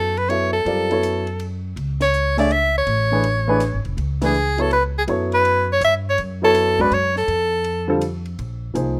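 Modal jazz in a swinging 3/4 at 163 BPM, searching and spiritual, with a bright, close-miked soprano saxophone carrying the melody with soft-attacked vibrato over a dark, mellow baby grand piano, woody pizzicato upright bass and a dry cocktail drum kit with dark cymbals and a high-tuned snare sitting in the background, the band hitting accents at 2.0 and 4.2 seconds as the harmony rests on F#m11 before moving to F and Bb9sus4, all in a lightly reverberant, rough home-demo sound cut from a longer piece.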